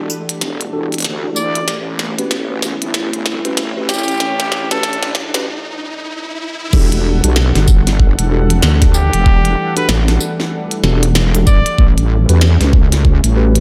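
A breathy, jazz-style trumpet with vibrato carries the melody over heavy, saturated wobble bass, clicky glitchy drums, a mellow tine electric piano and a deep, warbling ambient pad in this gritty, playful glitch hop excerpt, as a riser and a filter sweep on a smooth analog pad build toward a drop at 6.7 seconds, where a knocking, tape-warm electronic kick enters.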